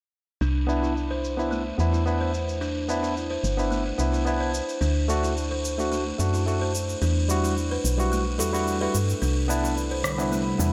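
A straight 4/4 groove of electronic shaker and rim click sets a peaceful, organic downtempo pulse, its filtered, gated-reverb kit sitting back in the mix as if re-recorded in a small room. Up front, a buzzing kalimba plays ringing, thumb-plucked arpeggios through a low-pass filter and digital delay, while a woody, round FM bass with a dark, fast-attack, decaying tone anchors the harmony beneath it. A bright, barky tine electric piano adds clean accompaniment through a combo amp, and both it and the bass carry a filter sweep across the cut. The chords move from Cmaj7 through D and Emadd9 before returning to Cmaj7, where a smooth sawtooth analog pad with chorus enters at 9.2 seconds and a very quiet clay-shell darbuka joins at 9.6 seconds. A lush hall reverb and bright 1980s-style digital production give this short excerpt from a longer piece a gentle, warm glow.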